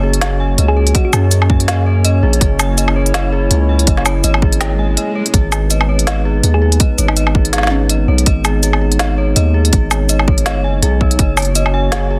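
Half-time drum and bass at 164 BPM in G# minor, this cinematic, dark excerpt is built on a moody, detuned analog pad with chorus and sidechain pumping, an eerie, inharmonic FM synth bell tracing arpeggios through chorus and tape echo, and a deep, sine-based 808-style bass held long and mellow up front, with chords moving from F# to G# minor at 5.3 seconds. An organic electronic kit of woody snare, smooth hats, shaker and woodblock that sounds re-recorded in a small room starts at 0.1 seconds, and an overdriven, hard-clipped electronic kick joins it at 0.9 seconds, all set against a swung, half-time feel. A round, tine-like thumb-piano-style pluck surfaces briefly in the background, most notably from 6.5 to 8.0 seconds, while an electronic swell sounds just before the chord change, all under light reverb and a dense, heavily limited modern master.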